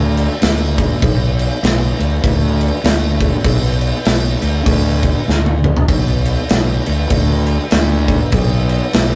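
A growly, fuzz-laden fingered electric bass opens this heavy, sludgy stoner and doom metal excerpt, sitting low between B1 and D2 in B minor with overdrive pushing it up front. A big acoustic rock drum kit joins at 0.2 s, with a punchy kick, a medium-tuned snare, toms and crash cymbal placed close in the mix. The groove moves at 98 BPM in 4/4 with a swung eighth-note feel that gives the weight a loping lilt. A drum fill from 5.3 to 5.9 s breaks up the pattern. The excerpt carries the rough character of a rehearsal-room recording, with tube saturation and a light touch of reverb.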